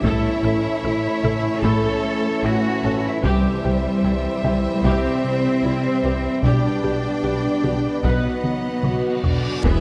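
A straight 4/4 pulse at 75 BPM, struck by a taiko ensemble with hard sticks, drives this tense, brooding cue from a hybrid orchestral and electronic film score. Up front, a lush cello section anchors the low end alongside a double bass section and a round, nasal analog bass riff. Above them sit violas, a soft-attack second violin line and a bright, intense first violin melody with vibrato. French horns and trombones hold very quiet sustained chords beside a chorused analog pad, a squelchy, resonant blip pluck spins arpeggios, and a clear grand piano adds intimate texture with audible action noise until 8.1 seconds. The harmony moves from A to C, then G/B and B, in a dark production bathed in scoring-stage reverb. A drum fill and an electronic reverse cymbal with sub drop lead to an impact at 9.6 seconds, where a mellow tuba and a deep sub bass with octave land on a low E.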